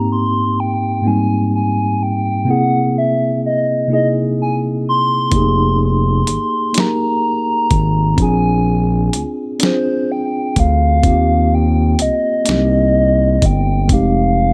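In a slow, straight six-eight lilt, this tender, intimate R&B fragment opens with a mellow tine electric piano under a hollow, woody clarinet-like synth lead that sings the melody through chorus and slapback echo, before a smooth, gliding synth bass and a gritty, compressed soul drum kit with a thumpy kick, snare and hi-hat enter together at 5.3 seconds, all set in a digital ambience over chords moving from Abmaj7 through Fm11 to Eb6.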